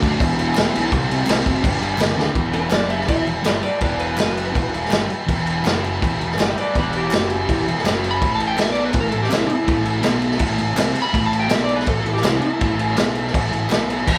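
A straight 4/4 drive carries this swaggering, gritty garage rock excerpt: a punchy, dark-cymbaled vintage drum kit sits up front and hits a fill at 2.2 s, a double-tracked fuzz guitar plays the riff over an overdriven fuzz bass, a buzzy, heavy-vibrato combo organ holds sustained chords in the background, very quiet crisp handclaps join at 0.6 s, and a dark, slightly broken-up slide guitar takes a solo from 2.4 s, with the whole band captured playing live in one room under a moderate large studio reverb.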